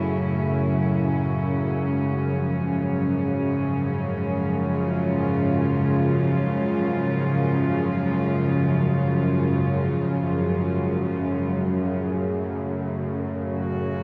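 A tense, wave-folded drone with a sawtooth edge and a noise layer sits up front in its low register, its slow attack, vibrato and long release bathed in its own reverb. Beside it, a studio cello section plays soft-attack, sul tasto sustained chords through shimmer reverb, floating over an F#m7 that moves to C# at 1.9 seconds and settles on F#m at 12.0 seconds. This cavernous, dark ambient drone fragment in free time spreads into a huge reverberant space with an 8.5-second decay, giving it a dark, warm production.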